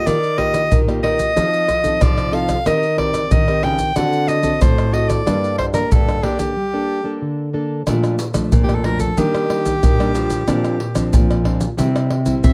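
A nostalgic, yearning blend of samba and choro, this short cut from a longer piece moves at 92 BPM with a straight feel in four. A bright, close-miked soprano saxophone carries the melody with light vibrato and a jazz-style voice, sitting up front over two fingerpicked nylon-string guitars, one supplying the chordal accompaniment in a small, intimate tone and the other, with fresh strings and a classical touch, holding down the bass. Maracas, a deep surdo, pandeiro and tamborim played with hard hands fill out the acoustic percussion, heard up front in a small room. After a break from 6.6 to 7.9 seconds, the music shifts to Bb major and the saxophone takes a solo through to the end at 12.5 seconds. A light reverb gives the whole ensemble a gentle sense of space.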